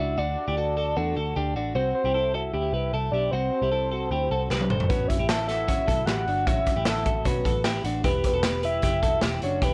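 Youthful and bright, this jangly indie pop excerpt moves at 153 BPM in a straight 4/4, cut from a longer piece. A soft, octave-layered synth lead carries the melody from the start, its round, full-bodied tone with a sub octave, vibrato and sustained notes colored by chorus and phaser. Beneath it, a twelve-string electric guitar picks clean, twangy arpeggios that sit up front, while a vintage muted electric bass adds a dark, foam-muted punch. At 4.5 seconds a raw garage drum kit enters with a fill, bringing a saturated, gritty sound from a small, pumping room, a punchy kick and a rolled-off top. The chords move from D to C, then Aadd9 and Em, all under light studio reverb and the worn, warbling pitch drift of old cassette tape.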